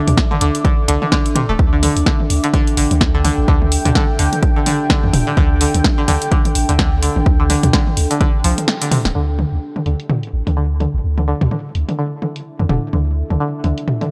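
A dry cut from a hypnotic, quirky minimal techno track at 127 BPM in 4/4, with a swung sixteenth-note feel. An overdriven, punchy electronic kick sits up front until 8.3 s, joined by a punchy, overdriven analog drum machine playing low-pass filtered hi-hats and snare, plus electronic toms with tape echo, while a deep sine sub bass with a pitch-drop attack pumps against the sidechain. A twangy, nasal resonator pluck riff with chorus and tape echo pumps over a dark, detuned ambient pad bathed in chorus and its own reverb, and after a band accent at 8.7 s the music moves into a new section at 9.2 s.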